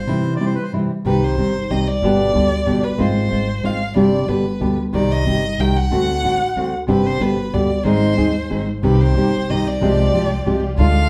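A reedy, airy bandoneon phrase opens this playful, elegant tango fragment, heard only briefly over a woody, thumpy pizzicato upright bass on gut strings. A dark, thumb-plucked nylon-string guitar sits up front with classical accompaniment, carrying the rubato three-beat sway through a short break. At 1.1 seconds a single bowed violin takes a solo, expressive and warm, with soft attacks, vibrato and portamento gliding across the minor-key harmony. Near the close, at 8.8 seconds, a dark string section adds sul tasto stabs in the background, smooth-topped and intimate. The band plays together live in one room, bathed in a large, wet studio reverb, and the passage is cut from a longer piece.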